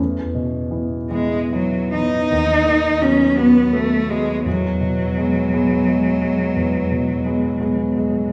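A grand piano opens this serene, lyrical romantic excerpt for cello and piano, its intimate, deep-bass accompaniment carrying audible action noise as it moves from E through B/D# and back to E in a rubato 12/8 at 56 BPM. At 1.1 seconds a single bowed cello enters with a rich, focused melody, its vibrato sitting in a mid register above the piano. Both instruments sound up front, yet a wet recital hall reverb places the listener further back in the room, and the piece is cut off at 8.3 seconds.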